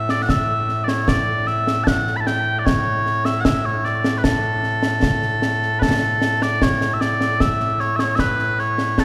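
A mellow, sweet set of small bagpipes opens this proud, ceremonial fragment of Scottish pipe music, its continuous solo melody sitting up front in a wet, reverberant hall as concert snare and bass drum join a moment later, close and dry with dark cymbals, carrying the straight two-beat pulse through a change of section at 5.8 seconds.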